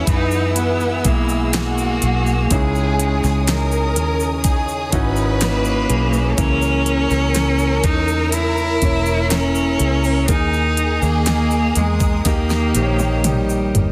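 A bright, focused solo cello carries the melody with vibrato from the first moment, shadowed by a lush violin section line, both touched with digital delay, over an intimate concert grand piano with audible action noise, a quiet fingerpicked steel-string guitar, a dark string section holding chords in the background, and a round, foam-muted electric bass sitting up front. This heartbroken pop ballad moves at 61 BPM in 4/4 through Eadd9, C#madd9 and A#dim/C#, while a produced drum kit with a knocking kick, fat snare and crisp hats plus a grainy egg shaker come in at 0.1 seconds. D#sus4 resolves to D# at 12.3 seconds, where a drum fill closes the fragment, all in a light small-room ambience with a dense, heavily limited modern master.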